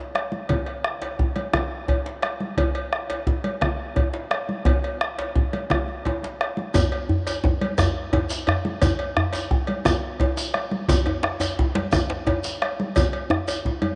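A deep, dark bombo sits up front in this festive, driving West African traditional drum ensemble excerpt at 116 BPM in 12/8, joined from the start by bright, damped congas, a metallic cowbell and a medium-tuned djembe, with a grainy, distant shekere arriving at 6.7 s and a second, close and dry djembe at 6.8 s, set in a moderate plate reverb.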